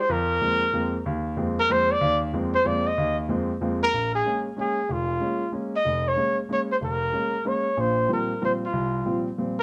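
A large studio's moderate reverb gives this short jazz excerpt a roomy, searching intensity, with a swung 3/4 pulse at 187 BPM and tuning set at A4 = 435 Hz. A dark, breathy trumpet carries the melody with light vibrato and scooped notes, opening with a solo, while a warm grand piano supplies the accompaniment from 0.1 s. After 3.9 s the harmony settles into Bb dorian, moving from Bbm7 to Fsus2/Bb.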